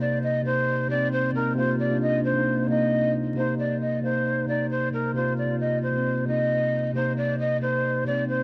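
A breathy, hollow jazz flute and a mellow tine electric piano sound together from the opening moment of this short cut from a longer hip hop piece, set in C minor at 134 BPM in 4/4 with a half-time feel. The mood is dark and eerie, resting on a single Cm7 chord, with the tuning sitting slightly low at A4 = 436 Hz. Up front, the flute carries the melody between Bb4 and Eb5. Its metallic tone has a soft attack and lifted highs, with vibrato, and it is shaped by a low-pass filter and a delay. Alongside it and equally up front, the electric piano plays the accompaniment from C3 to F4, clean and direct, colored by a phaser and its own low-pass filter. Both parts run the full 8.4 seconds through two sections that change at 3.4 seconds, set in the light reverb of a small room over a layer of vinyl crackle.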